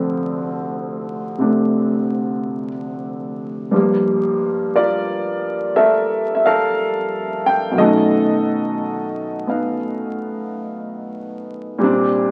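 A concert grand piano carries this solo jazz piece alone, its tone intimate and up front, with deep bass and the natural sound of its action noise audible beneath the notes. The mood is late-night and cool, set at a slow 60 BPM in 4/4 with a swing feel on the eighth notes, and the piano ranges from D2 up to G5. The harmony opens on Dm7, shifts to Gm9 at 3.7 seconds where a new section begins, moves to B9 around 7.8 seconds, and settles on Bb69 near the close. The sound is that of a very old 78 rpm record, with vinyl crackle over a wet, small-room reverb that gives the playing a close, enclosed feel. Cut from a longer performance, the passage lasts just over twelve seconds.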